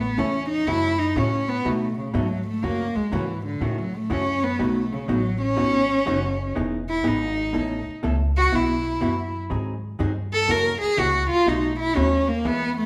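Heard through a wet, roomy studio reverb with the band playing live together, this playful, swinging western-swing country passage, cut from a longer piece, features an intimate, up-front bowed cello soloing throughout with light vibrato, a soft attack and an airy sul tasto tone, over a woody, thumpy pizzicato upright bass and a dark, clean, compressed hollow-body electric jazz guitar picking the accompaniment from 0.2 seconds.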